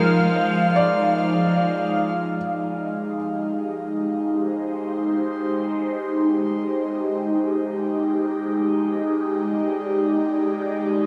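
Ambient, luminous and peaceful, this excerpt from a longer piece floats in a vast, echoing cathedral reverb, where an airy, breathy pad with chorus and phaser holds sustained chords up front, a felt-muted upright piano with audible action noise plays soft, intimate arpeggios through delay until 3.1 seconds, and a biting, nasal cello with light vibrato sings a brief delayed melody in the background before stopping at 1.6 seconds, as the harmony shifts from Fm7 to Abmaj7 at 2.4 seconds.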